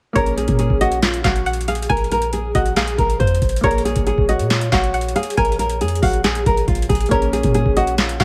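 A half-time trap groove at 138 BPM in 4/4 drives this menacing, eerie hip hop excerpt in Bb minor, held on a single Bbm7 chord from 0.2 s to 8.2 s. The booming analog drum machine sits up front, with a deep kick, crisp snare, metallic hi-hats and handclaps, overdriven and re-recorded in a small room that lends a short ambience to the snare, clap and hats. Beneath it, a clean 808-style bass built on a sine tone thuds with a fast attack and a dark, decaying tail. Leading the melody, a fingerpicked nylon-string guitar plays up front with a classical touch and audible finger squeak, while a twangy, sawtooth-based resonator pluck adds a higher second line, coloured by a filter sweep, a moving notch, chorus and digital delay. A soft felt-muted upright piano enters first at 0.1 s and stays in the background as mellow, intimate accompaniment with audible action noise, all set in a dry space layered with vinyl crackle.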